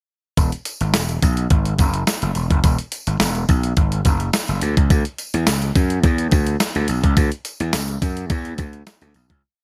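Early-eighties boogie funk with a smooth, feel-good mood, this whole piece unfolds as a single breakdown that runs from 0.4 to 9.4 seconds. An overdriven electric slap bass sits up front, direct and amped, with a growly, gritty edge as it lays down a fat, syncopated boogie line in a low register. Beside it, a clean 12-bit drum machine with a sampler-style character plays a mid-tempo boogie beat, pairing a thumpy kick and a medium-tuned snare with hi-hat, re-recorded in a small room. A jingly acoustic tambourine, close and dry but tucked into the background, marks the backbeat with a bright shimmer. The production carries a 1980s-style digital ambience, and the track fades out from 7.2 seconds to its end.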